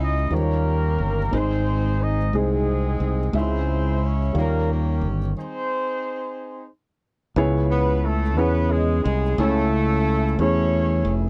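Soulful and fervent, this slow gospel passage moves in 6/8 at 60 beats per minute with a straight feel, cut from a longer piece and tuned slightly low at A4 = 438 Hz. A mellow horn section carries the melody up front, its loose, pop-style phrasing marked by vibrato, octave doubling and a smooth top. A dark grand piano supplies the accompaniment with an intimate, natural tone, its action noise audible. Beneath them, a bright, punchy fingered electric bass sits direct and forward in the mix. The harmony circles through D#9, G# and C#m before a stop from 5.4 to 7.4 seconds, after which the music settles into C# minor with C#m7 and Amaj7/C# chords. The dry, close sound recalls a 1970s studio, with little reverb around the players.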